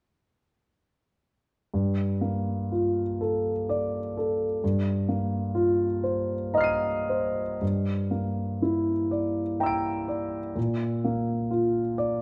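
A solo concert grand piano enters at 1.7 s with deep bass and a natural, up-front tone, drifting in uneven rubato through a mysterious, nocturnal impressionist passage in G minor at 61 BPM in 3/4, moving from Gm9 and F9sus4/G into Gm6 and Bb within a moderate recital-hall reverb before this cut from a longer piece ends at 12.2 s.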